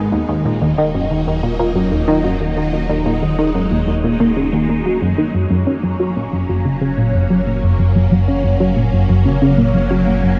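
A straight 4/4 pulse at 92 BPM drives this cosmic, luminous slice of sequencer-driven space music in F# major, where a tight, up-front sequenced synth riff with wave-folded sawtooth plucks, chorus, phaser, 12-bit sampler grit and delay rides over swirling, bright string-machine chords and a deep, round analog bass, all bathed in a huge 7.8-second reverb and a worn, warbling cassette-tape drift as the harmony moves from D#m to F# at 5.3 seconds.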